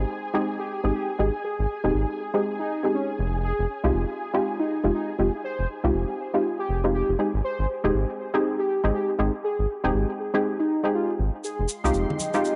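A muted, deep dub chord stab with a filter sweep, chorus and tape echo pulses through this moody, smooth deep house piece over swung sixteenths, riding on a round, up-front analog bass and a bright, silky string pad, while a velvety synth lead with vibrato and analog delay enters at 0.6 s, a grainy egg shaker joins at 11.4 s, and ringing hard-hand congas with a warbling, nostalgic pad in the background arrive at 12.1 s, the whole home cassette recording bathed in spring reverb.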